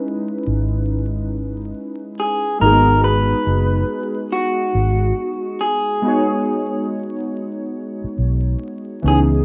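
Lo-fi hip hop at a slow 70 BPM in 4/4 with a swung sixteenth feel, this short excerpt carries a melancholic, nostalgic mood. Warbling synth keys open the piece at 0.0 seconds on a rootless F#9sus4, their detuned, mellow tone softened by chorus, cassette-tape character, a low-pass filter and plate reverb. A dark, round, foam-muted electric bass joins at 0.5 seconds, sitting up front in the low register. At 2.2 seconds an electric guitar through a small old amp takes the melody in a narrow upper range, its slightly broken-up, compressed sound dulled by a low-pass filter. The harmony moves to G#m7 at 2.6 seconds, and the whole piece sits in a rough home-demo mix with light reverb and a bed of vinyl crackle.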